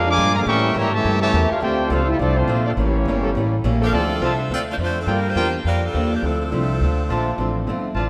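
Big band swing at a brisk, dramatic clip, this short cut opens with a warm, present trumpet section carrying the melody over a clear trombone line and quiet sustained trombone chords, while a woody pizzicato upright bass sits up front and a boxy, picked acoustic guitar with audible finger squeak plays in the background. At 3.8 seconds an edgy, close-miked saxophone section takes over the melody, joined by punchy trumpet stabs and a warm baby grand piano tucked behind the band. Minor-key chords with a tense altered dominant heighten the drama, and a moderate scoring-stage reverb gives the ensemble a roomy sheen.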